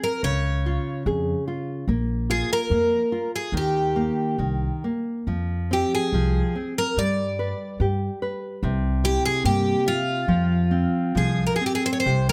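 Closely miked with light reverb, this mournful, longing fado-style ballad excerpt drifts in free rubato as a bright, shimmering, octave-doubled twelve-string acoustic guitar picks the melody up front over a full-bodied, fingerpicked nylon-string guitar accompaniment, with a woody, thumpy pizzicato upright bass entering at 0.2 seconds.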